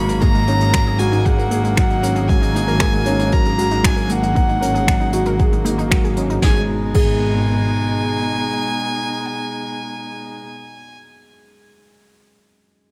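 A felt-muted upright piano leads this melancholic, moving piano and strings electronica piece in G# minor at 116 BPM, its thick-felt riff sounding intimate and boxy with audible action noise and a tape echo trailing each phrase until it ends at 12.9 seconds. Above it, a single dark violin carries the melody with light vibrato and an earthy tone, also touched by tape echo, while a veiled, con sordino string quartet holds sustained chords that pump against the beat. Underneath, a rich chamber double bass section bows a smooth, focused bass line on G#, and a lush, warbling unison pluck with a detuned sawtooth edge and a filter sweep ripples through arpeggios in the background. A deep, layered electronic kick drives the groove alongside a distant, roomy brush kit of snare, hi-hat, finger snaps and crash, with the drums, pluck and bass dropping out by about 7.9 seconds. The opening drop over F#add9/G# gives way at 6.4 seconds to a G# minor passage, all set in light reverb, in this excerpt cut from a longer piece.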